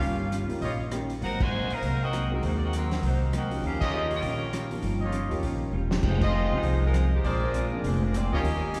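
A woody, thumpy upright bass sits up front in this brassy, swinging big band excerpt at 199 BPM in Eb mixolydian, alongside a muffled, lo-fi vintage drum kit with a fat snare, while a clean hollow-body jazz guitar and a deep-toned concert grand piano comp in the background; a distant saxophone section with light vibrato carries the melody from 1.2 seconds, a smooth-topped trumpet section fires stabs that return at 3.8 seconds, and a short drum fill at 5.7 seconds leads into a band accent at 6.2 seconds, all bathed in a long, wet church reverb.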